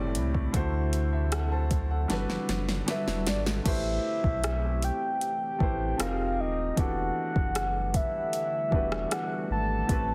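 A straight, unhurried 4/4 groove from an electronic, produced drum kit sets the pace of this moody, sensual contemporary R&B excerpt, its soft kick, fat snare, metallic hats, rim click and crash sitting up front with the ambience of a large room around them. A thick, saturated sub bass with a fast attack holds down the low end beneath a natural-sounding grand piano whose long sustain carries the chords from Am7 through D9 to Gmaj7. Far behind them, a deep, detuned sawtooth pad with a slow attack and long release adds mellow sustained harmony, coloured by chorus and its own reverb. A drum fill from 2.1 to 3.7 seconds leads into the second section, and a round, octave-layered synth lead enters at 2.9 seconds with a soft attack and vibrato, treated with chorus, phaser and delay. That section darkens the harmony with a turn to Fm11 and Em11, while the whole mix keeps a dry, heavily compressed, radio-ready sound.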